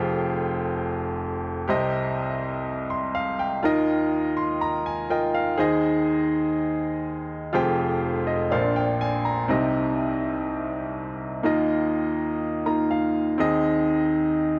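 Pop piano piece, romantic and nostalgic in mood, played by a solo baby grand piano that sounds clear, polished and up front, with long sustain ringing across a range from deep bass to bright upper notes. The close, dry recording carries a touch of small-room ambience and a 1970s studio character, as the chords move through colored harmonies like Fmadd9, Ebsus2 and Ab/Eb. Short piano fills appear between phrases, around 4.1 s, 8.0 s and 12.4 s, and a second section begins at 9.5 s in this fragment of a longer piece.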